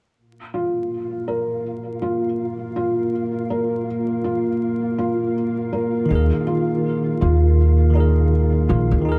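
A woody, growly pizzicato upright bass arrives up front at 6.1 seconds alongside a bell-like tine electric piano with harmonic tremolo, tape echo and 12-bit sampler grit, as the harmony moves from Bb5 to Ebsus4 in this brooding, cinematic trip hop excerpt at 81 BPM with a swung sixteenth feel. Before them, a felt-muted upright piano plays intimate arpeggios through a low-pass filter and digital delay from 0.5 seconds. Beneath it sit a detuned, wave-folded analog pad holding sustained chords with chorus and sampler grit, a flickering granular texture bathed in its own reverb, and a bed of vinyl crackle in light studio ambience.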